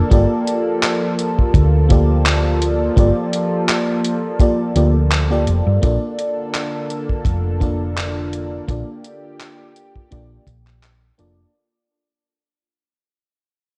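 Dreamy and woozy, this short vaporwave excerpt drifts at 84 BPM with a light swing, resting on a Gm9 chord and fading out from 3.9 seconds to 11.5 seconds. A detuned FM electric piano with a soft pad layer sits up front with chorus and analog delay, over a thick, sawtooth-and-square unison pad drenched in chorus and phaser. An up-front, round, dark hollow-body electric bass anchors the low end, while a dry, tight acoustic kick and a gritty, sampler-style 8-bit drum machine with handclaps, hi-hat and gated reverb add rhythm, all colored by cassette tape and a small room ambience.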